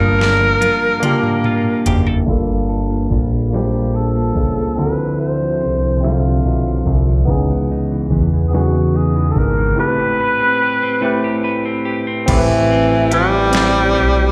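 A slow, unhurried six-eight sway carries this late-night, sultry R&B fragment, with a smooth, produced drum kit entering at 0.2 seconds with a fill of knocking kick, deep snare, toms, smooth hats and crash cymbal before settling into the groove. Up front, a breathy tenor saxophone sings the melody in an intimate, whispered pop style, its scooped notes, vibrato and soft attack bathed in plate reverb, slapback echo and tape echo. A fat analog bass sits just as forward, thick and detuned with a fast attack and sustained tones, while a filter sweep moves through the middle of the passage from 2.3 to 12.3 seconds. A barky tine electric piano, bright and lightly overdriven through a combo amp, fills out the accompaniment with plate reverb and slapback echo. Alongside it, a dark, clean picked electric guitar plays a second line with its own slapback and tape echo. Lush ninth chords drift from Gm9 through Dm9 and C#m9 to Am9, and the whole performance sounds like a live gig heard through the venue's PA, softened by recital hall reverb and a low-pass filter.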